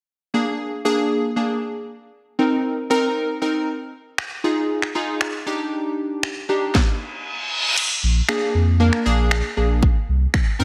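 Glassy digital keys open this energetic, confident dance-pop excerpt at 117 BPM, their full-bodied, evolving tone pumping with sidechain, chorus and slapback echo over chords that move from Bb7 through Cm7, Fm7 and Ebmaj7. A layered house drum kit arrives at 4.2 seconds with a punchy kick, a cracking snare, finger snaps and crash cymbal, and an electronic reverse cymbal at 7.1 seconds leads into a new section where a deep, round sub bass enters at 8.0 seconds, also pumping. The lush hall reverb gives it a big arena sound, and the excerpt closes on C7(no3).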